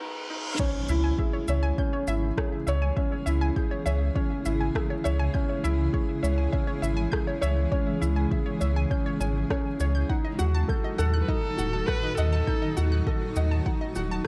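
Piano and strings electronica, intimate and hypnotic and cut from a longer piece: a mellow felt-muted upright piano riff with tape echo sits up front from the start as a riser and reverse cymbal lead into a drop at 0.6 seconds. There an impact lands and bright detuned analog pluck arpeggios, an overdriven deep house kit with crash, rim click and shaker, a deep overdriven electronic kick and a round, pumping sub bass join, with a cloudy granular pad arriving at 1.4 seconds. A focused bowed viola with vibrato then carries a brief melody from 11.2 seconds ahead of the fade-out at 13.3 seconds in a dark, lightly reverberant mix.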